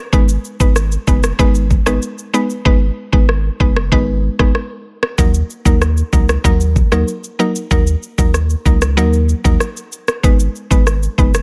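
Set in a digital ambience, this hypnotic, bouncy dancehall excerpt moves at 95 BPM in a straight 4/4, cycling from Abm to Ebm at 5.2 seconds and back to Abm. An up-front, electronic afro-pop kit drives it with a knocking kick, rim click and shaker, and its hi-hats drop out between 2.7 and 5.2 seconds. Beneath it sits a deep, thick, saturated sub bass with a fast attack and sustained notes, while a bright, woody, round, FM mallet-like pluck with a noise layer and chorus sits up front, its percussive notes decaying.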